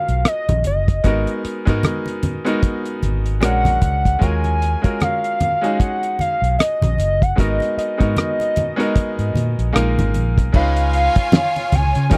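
A dry, close 1970s-style studio sound with light reverb frames this bittersweet, smooth soul excerpt in Eb minor, moving at 76 BPM in 4/4 with a 58% swing on the sixteenths. Up front, a drum kit damped with cloth gives a thuddy, tight kick, a fat snare with rim clicks, and dark, rolled-off hi-hat and crash cymbals, while low-tuned congas with a thick-skinned, small-room tone join from 0.5 seconds. A vintage fingered electric bass, foam-muted, amped and round, anchors the low end from Gb1 to Db3. A bright baby grand piano, brilliant and intimate with audible action noise and short sustain, plays accompaniment through chords such as Ebm11, Abm9 and Bb7alt. The melody comes from a hollow, woody square-wave lead with a fast attack, chorus, vibrato and portamento, singing between Eb5 and Ab5. At 10.5 seconds the harmony turns to Db7 as a focused, bowed studio violin section enters with vibrato as a second line, adding a lush ensemble sheen to the close.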